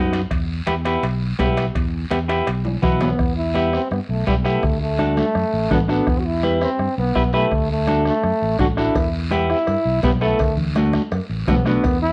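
A straight 4/4 cumbia groove at 167 BPM drives this passionate piece in E minor, with soft-beater bombo, raspy guiro, thick-skinned dry congas, and ringing, saturated timbales and cowbell in the background that drop out after an opening drum fill and return at 9.0 s, beneath a round, punchy fingered electric bass and a clean, picked electric guitar moving between Em and D, while a breathy, whispered trombone with light vibrato and scooped notes takes an intimate solo from 3.2 s, all heard through worn, warbling cassette tape with moderate studio reverb.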